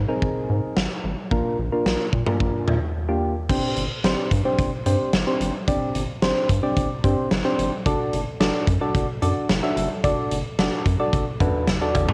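A huge arena drum kit sits up front in this melancholic, nocturnal synth-pop excerpt, its punchy kick, medium-tuned snare, hi-hat, toms and crash cymbal carrying a natural big-room sound. Soft, round electric-piano-like synth keys, coloured by chorus and cassette tape, move from Abadd9 and Bb to Gsus4 and D/F#, while a rubbery, hollow square-wave bass with a resonant filter pluck sits darkly beneath. A short break at 2.9 seconds leads into a new section at 3.5 seconds, and moderate spring reverb and a small room surround this homemade cassette recording.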